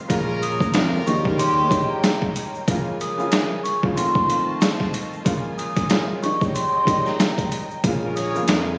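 The recording sounds like a phone capturing a small room, with vinyl crackle, studio reverb and compression giving a dusty, lo-fi haze to this short cut from a longer gritty, tough boom-bap hip-hop track with a swung sixteenth feel. Up front, a sampler-style drum kit thumps with a muffled, pitched-down kick, a medium-tuned snare and hi-hat, overdriven and re-recorded in a small room, while a grainy egg shaker sits in the background. An intimate, woody upright piano with audible action noise and a cassette-tape tint carries the accompaniment over a Bbm7, Eb9 and F7 progression, with a lush bowed string section holding chords behind it. A mellow vibraphone with soft mallets and slow motor vibrato plays the ringing melody through a tape echo, and a brilliant jazz-style trumpet section fires stabs at the start and again around 8.0 seconds. A smooth, dark sawtooth synth bass with vibrato plays up front at the opening, drops out after 1.6 seconds and returns at 7.8 seconds.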